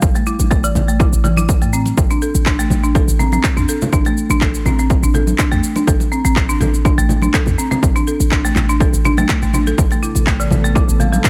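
Afro house with a spiritual, driving feel and a light swing, built on a punchy, overdriven electronic kick up front, a deep, boomy 808-style bass with sidechain pumping, tape-warm electronic shaker and handclaps, and soft-handed congas in the background, while a woody, rustic folk marimba struck with hard mallets plays arpeggios up front through tape echo and pumping, and at 9.8 s an ethereal, airy pad with ensemble chorus slips in with sustained chords in the background in this short excerpt cut from a longer piece.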